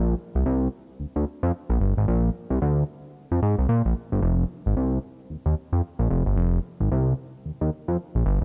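A fat, detuned sawtooth analog bass plays alone and up front through this short, hypnotic funk cut, its thick, sustained tone carrying a swung sixteenth-note feel, a fast attack and a filter sweep, with a new section arriving at 4.2 seconds, all captured in a dry, close 1970s-style studio sound.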